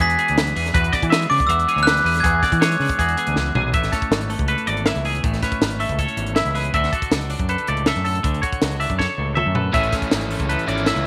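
A playful, intricate stretch of math rock and midwest emo opens with a sparkling, bell-like glockenspiel melody struck with brass mallets and carrying a slapback echo, ringing above a bright, compressed twelve-string electric guitar, clean twangy arpeggios, a growling overdriven fingered bass and a dry compact cocktail kit with a high-tuned snare and punchy kick; the glockenspiel drops away at 3.3 seconds as the harmony moves from E9 through Amaj9 and Dmaj9, drum fills mark the turns, and a biting, double-tracked overdriven guitar riff arrives up front at 9.7 seconds, the whole band set in a small room with light reverb.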